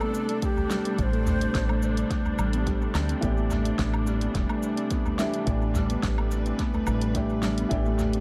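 An echo-heavy mix in light small-room ambience carries this mystical organic downtempo excerpt over a single Am11 chord: a breathy, reedy ney sings a brief dub-echoed melody until 2.1 seconds above rich, bowed strings with sidechain pumping and ringing, fingerpicked Celtic harp arpeggios through a low-pass filter and analog delay. Beneath them sit a deep house kit of cabasa, hi-hat, fat snare and woodblock with tape echo, plus a punchy electronic kick and vintage, band-limited udu in the background. A dark, round fretless bass sits up front from 1.0 seconds, and a soft, felt-muted upright piano with audible action noise joins at 3.2 seconds, pumping and tape-echoed.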